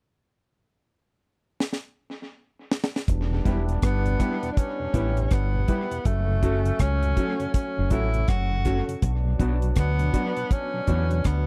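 Meditative and laid-back, this short roots reggae passage, cut from a longer piece, opens with a deep, dry drum kit whose fill begins at 1.6 seconds, its high-tuned snare, tight kick, hi-hat and rim click sitting up front with a touch of tape echo. At 3.1 seconds a round, dark dub bass arrives up front alongside a clear, punchy trombone section carrying a second line with light vibrato and tape echo, as the chords move from Em to F#m and then Bm. Behind them, a very quiet tonewheel organ adds soft, flute-like accompaniment with chorus vibrato and key click, while a clean, fingered electric guitar sits in the background under lush chorus and tape echo, and a concert grand piano drops boxy stabs with long sustain. From 3.8 seconds a breathy tenor saxophone takes the melody, distant and intimate with a soft attack and a whispered, roomy tone, plus its own tape echo. The recording has a close 1970s-style studio sound with little reverb.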